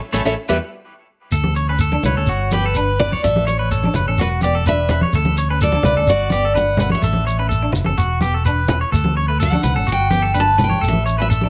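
A light reverb surrounds this joyful, carefree highlife guitar band excerpt in D major at 126 BPM, which opens with a band accent before settling into a cycle of D, G, A and E chords from 1.3 s. Up front, a bright, full-bodied steel-string acoustic guitar picks the melody with audible finger squeak, while a twangy, slightly broken-up electric guitar plays arpeggios through tape echo and a clean, scooped semi-hollow electric sits in the background as accompaniment. A dark, round, punchy fingered bass anchors the groove beneath a grainy shekere, and ringing, medium-tuned congas join at 1.4 s.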